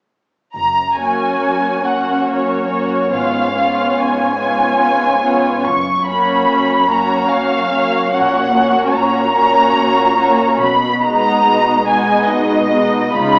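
Up front, a veiled, con sordino violin section carries the vibrato melody of this tender, serene fragment of a slow romantic movement for string orchestra in F# major, unhurried at 72 BPM in a rubato 3/4, joined at 1.0 s by a lush symphonic second-violin line and softly attacked violas, over close, dark cellos and a double bass section sitting in the background, the whole bathed in scoring-stage reverb and heard through worn, warbling cassette tape with pitch drift and a small-speaker sound.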